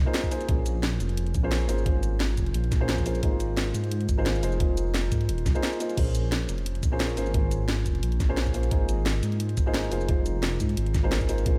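Liquid drum and bass at 175 BPM, soulful and lush, in which a soft, felt-muted upright piano with tape echo lays mellow Bbm9 and Ab69 chords over a deep, rumbling detuned saw bass that sits up front, while a gritty, thumpy sampler-style kick and an electronic garage kit with a cracking snare, hi-hat, shaker and crash drive this short cut from a longer piece under light digital reverb.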